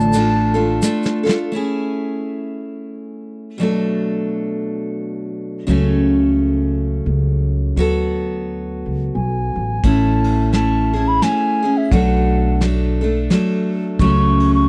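A bright, full-bodied picked steel-string acoustic guitar sits up front throughout this gentle, peaceful acoustic folk excerpt in A major, a swung 3/4 at 86 BPM. It is joined by a woody pizzicato upright bass that drops out after the opening and returns at 5.7 seconds, a grainy tube shaker in the first second, and soft brushed drums whose fill closes the opening before they return at 9.8 seconds. A pure wooden flute with vibrato and a crisp attack sounds briefly at the start and returns at 9.2 seconds to carry the melody to the end. It is all in a dry, close 1970s-style studio sound over chords moving from Dm/A through Amaj7, Bm7, F#m/C# and D6.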